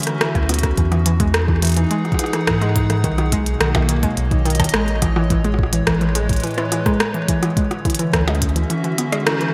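IDM at 106 BPM in E major, wistful and playful, with a hollow, flute-like pad holding chorused chords through Dmaj9, Emaj9, Bmaj9 and Amaj9, a warbling lo-fi pluck spinning chorused, delayed arpeggios, and an up-front glitchy kit of clicky overdriven hi-hats, percussion blips and rim clicks in gated reverb and delay, joined at 0.4 seconds by a round, tube-saturated sub bass and a soft overdriven electronic kick, set inside a lush hall reverb with a bright 1980s-style digital sheen before a band accent at 9.3 seconds.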